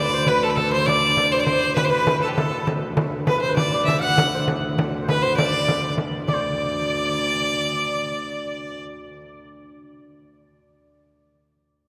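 An intense, up-front fiddle with light vibrato carries the melody of this festive, rustic medieval dance in D mixolydian at 133 BPM in 6/8, accompanied in the background by a clear, vintage-toned folk shawm and a delicate fingerpicked lute on gut double strings, while a boxy, airy-bowed viola da gamba holds a ringing D2 drone and a small, bright frame drum played with soft hands keeps time until 6.4 s, the ensemble set in the long, wet reverb of a cathedral in this excerpt cut from a longer piece.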